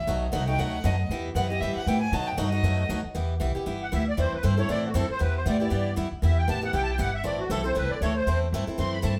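Acoustic string swing in E minor at a brisk 234 BPM, this swinging, virtuosic excerpt from a longer piece opens with an intimate, sul tasto violin solo with light vibrato and a soft, airy bow that stops at 2.9 seconds, before a reedy, shimmering musette accordion takes the melody from 3.8 seconds, all over a woody, thumpy gut-string upright bass and a bright, boxy picked guitar, both up front, in a live room with studio reverb.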